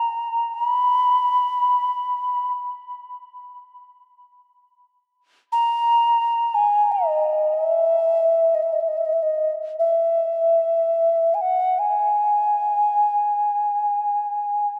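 A hollow, clay-toned alto ocarina carries this meditative world excerpt alone from 0.0 to 14.8 seconds, its airy, tongued notes shaded with vibrato and softened highs as it sits up front. Tape echo trails the ocarina's line, and a huge ambient reverb with a 4.0-second decay opens a spacious, calm room around it. The production is dark and warm throughout.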